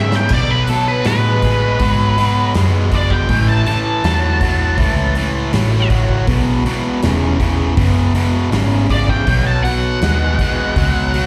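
Blues rock power trio with a southern rock edge, this gritty, swaggering excerpt sets a dark, fuzzy octave-fuzz lead guitar soloing with wah, distortion and slapback echo over a bright, double-tracked overdriven rhythm guitar riff and a round, foam-muted vintage bass. A big acoustic rock kit with punchy kick and bright cymbals opens on a short fill and enters at 0.1 seconds, while the chords move from B5 through A and E to B. The whole band sounds like a live gig heard through the venue's PA, wrapped in small-room ambience and recital-hall reverb.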